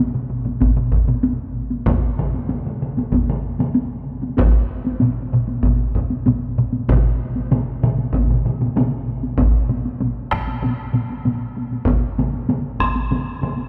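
A straight 4/4 pulse at 96 BPM drives this ceremonial Japanese traditional taiko piece, where three heavy-stick ensembles layer up: one close and dry, another compressed, saturated and up front, and a third in a small room that drops out after its opening hits and returns at 5.0 seconds. A solo taiko drum, also in a small room, joins at 1.9 seconds, and the ensemble sits inside the long cathedral reverb of a church or concert hall.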